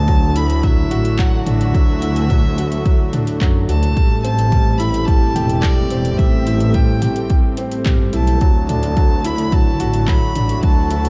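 A steady, straight 4/4 pulse at 108 BPM drives this melancholic, hypnotic piano-and-strings electronica fragment, cut from a longer piece. An overdriven electronic kick sits up front from 0.1 s, while a deep house kit adds handclaps, toms and metallic hi-hats, both kick and kit coloured with overdrive and studio reverb. Underneath, a bowed chamber double bass section holds a focused, close low end with vibrato and a sidechain pumping effect, and a dark studio string section sustains soft-attacked, intimate chords in the background. A concert grand piano plays an open riff with a deep bass register, and a single distant, clear-toned bowed violin carries the melody. The harmony moves from Dadd9 to Am7 at 4.0 s and returns to Dadd9, all within a small room ambience and a dark, warm production.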